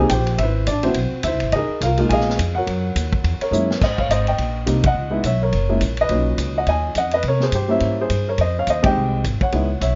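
Playful and swinging, this brief excerpt from a longer jazz piano trio piece moves at a brisk 210 BPM in 4/4 with a light swing feel, centered in Ab major and tuned slightly low. An upright piano carries the melody up front, its tone woody, present and polished, while a pizzicato upright bass with steel strings also sits up front, woody and warm. A vintage drum kit of kick, snare, hi-hat, ride and crash enters at 0.1 seconds and sits mid-forward, with dark cymbals, a high-tuned snare and a punchy kick. A drum fill at 3.5 seconds leads into a new section at 3.8 seconds, and the whole band hits accents at 4.8 and 8.8 seconds over rich harmony that moves through altered dominants and ninth chords. The sound has the intimate, slightly rough character of a home demo in a small room, with a dull, rolled-off top end.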